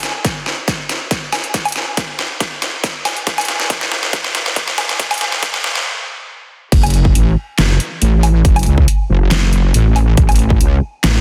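A half-time 4/4 pulse at 139 BPM drives this menacing, chaotic fragment of heavy wobble dubstep in F# minor, where a punchy overdriven electronic kick and an up-front drum kit of deep snare, handclaps, hi-hat, woodblock and crash cymbal build through a fill until 5.9 seconds, fall into a brief stop, then hit the drop at 6.7 seconds as a saturated, detuned sawtooth wobble bass with chorus surges in low and resonant, all set in a lush hall reverb under a dense, heavily limited master.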